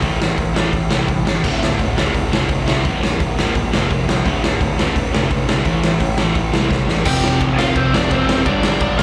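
Aggressive and angry, this 9-second punk rock excerpt in D minor charges along at 171 BPM with a straight 4/4 feel, two sludgy, overdriven guitars grinding out a very quiet riff alongside a bright, growling picked bass and a raw garage drum kit that sits up front with a boomy kick, saturated, gritty grit and a pumping stone-room character. A double-tracked thick fuzz guitar joins the riff at 1.4 seconds, and after a drum fill the bluesy lead guitar enters up front at 7.1 seconds with distortion and slapback echo as the chords move to F5 and Gm. The whole thing sounds like a live gig heard through the venue's PA, with small-room club reverb.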